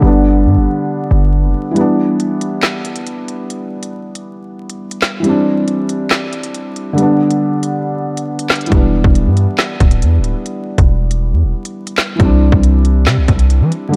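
A punchy, heavy 808-style bass with a fast attack and a noise layer opens this menacing, tense drill excerpt in E minor at 138 BPM in a half-time feel, drops out at 1.5 seconds and returns at 8.7 seconds. From the start, a soft, boxy felt-muted upright piano carries the G, Em7 and Cadd9 chords throughout. From 1.8 seconds an up-front electronic drum kit brings a hard-clipped kick, woody snare, crisp hi-hats and handclaps with vintage 12-bit sampler grit, all set in a dark production with light digital reverb and vinyl crackle.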